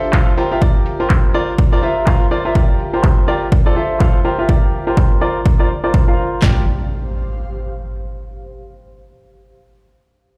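This piano house excerpt in G dorian moves at 124 BPM in 4/4 with a 16th-note swing, carrying a soulful, energetic mood over chords that alternate Gm7 with C9sus4 and touch Dm7. A clear, boxy grand piano sits up front with a short-sustain riff between F4 and F5, shaped by sidechain pumping, delay and a low-pass filter sweep. Alongside it, a punchy analog drum machine with a tape-warm kick, snare and handclaps drives the groove, while a layered, overdriven house drum kit adds handclaps, hi-hat and tambourine in the background under its own filter sweep. A very quiet, airy pad with detuned sawtooth and triangle tones, a breathy noise layer and chorus holds a soft bed from D4 to F5 until 8.3 seconds. At 6.4 seconds the house drum kit drops away while the drum machine carries on briefly, as a round, dark FM bass note on G1 and an up-front electronic impact mark the change to a G7 chord, with the impact ringing out to 8.4 seconds. 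The whole mix is bathed in a large studio reverb, heard as if played on a big sound system in a bare room.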